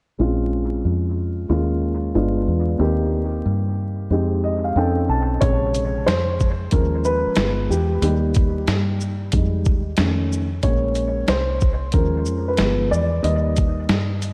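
Vinyl crackle and light reverb surround this echo-heavy jazz-hop excerpt, a cool, nocturnal hip hop groove in Bb dorian at 92 BPM with a swung 16th-note feel in 4/4. A dark concert grand piano, mellow and a little boxy with a deep low end, carries the accompaniment from the start through a dub echo, moving through chords such as Bbm9, Eb7sus4, G7b9 and Fm9. Underneath, a foam-muted fingered electric bass sits up front with a round, punchy tone. The piano plays a fill from 4.1 seconds, and at 5.4 seconds the second section opens with a piano solo as a compressed, gritty sampler-style drum kit enters with a thumpy kick, medium-tuned snare, hi-hat and shaker. Piano, bass and drums all stay up front in the mix as the progression cycles back to Bbm9 and settles on Eb.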